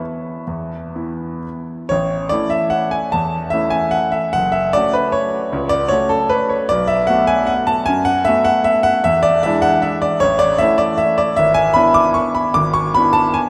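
A clear, polished grand piano rings up front through a wet cathedral reverb in a vast, echoing space, its audible action noise and long sustain framing a playful, elegant classical waltz in 3/4 and A major, played solo with rubato at 123-164 BPM across a range from F#1 to D6, moving through A, F#m, B5 and E7 after a brief opening section gives way to a new one at 1.9 seconds, in an excerpt cut from a longer piece.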